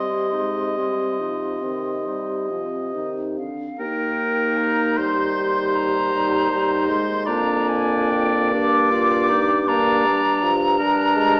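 A full wind quintet opens together in C minor: a hollow, airy flute with vibrato and a crisp attack carries the yearning melody high and close, while a clear oboe sings an up-front second line, a clear clarinet murmurs in the background, a mellow, vintage-toned French horn fills the middle and a dark, smooth-topped bassoon anchors the bass with light vibrato. The slow, elegiac classical movement sways in a rubato 12/8 at roughly 46-56 dotted-quarter beats per minute, brightening into Eb major at 3.8 s before turning toward G minor at 8.5 s. A wet recital-hall reverb and a small-speaker sound frame this brief fragment of a longer piece.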